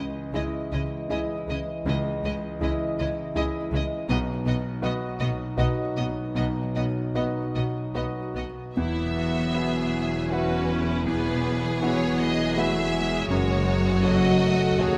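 This cinematic piece unfolds in an unhurried, rubato triple metre, carrying a longing and moving mood through a 15-second passage cut from a longer work. A smooth, warm violin section sings the melody with vibrato, joined by a second violin line of richer, focused tone. Beneath them a clear grand piano with a vintage, short-sustain character supplies accompaniment, while a ringing, fingerpicked concert harp spins arpeggios in the background. Mellow French horns hold sustained chords, and a viola section joins at 0.3 s to fill out the middle, with the cello and double bass sections grounding the low end in lush, bowed tones. The harmony moves from C#madd9 through B and Esus2 to F#m, all set in a moderate scoring-stage reverb that lends the ensemble a spacious bloom.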